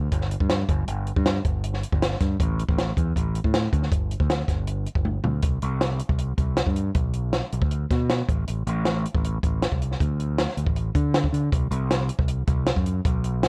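A growling, fingered electric bass opens this intricate, wistful excerpt of math rock and midwest emo in G major at 157 BPM. It is bright, overdriven and up front, and a compact cocktail drum kit joins at once with a high-tuned snare, punchy kick, hi-hat and toms in a tight, natural booth sound. A drum fill at 5.0 seconds leads into a new section at 5.4 seconds, all of it dry and coloured by the worn, warbly pitch drift of old cassette tape.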